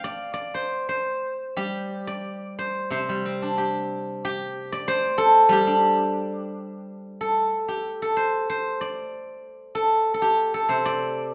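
Pastoral and flowing, this short passage from a longer piece of Chinese traditional music features a solo steel-string zither in the G shang mode, moving in a loose rubato around 86-95 BPM in 2/4. Played with fingerpicks, the acoustic zither sits up front with a silvery, ringing tone, ranging from low C3 to high G5. A moderate recital hall reverb surrounds it, and a new passage begins at 6.9 seconds and carries through to the close at 11.3 seconds.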